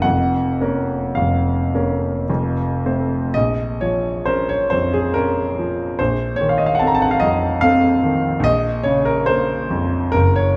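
In a 3/4 with generous rubato, the pulse drifts between 53 and 74 BPM, giving this romantic nocturne for solo piano a wistful, yearning mood. A concert grand carries everything alone, with a warm, smooth, vintage tone, a deep bass reaching down to F1, and melody rising as high as Bb5, all set up front in the sound. The music sits in Bb minor, tuned to A4 = 441 Hz, opening on Bb minor over F before moving to F and then, at 3.3 seconds, into a new section that returns to Bb minor, passes through F7 over Bb, and settles back on Bb minor at 8.4 seconds. A wet recital hall reverb lingers for about 1.4 seconds around the instrument. The passage is cut from a longer piece and lasts about 10.6 seconds.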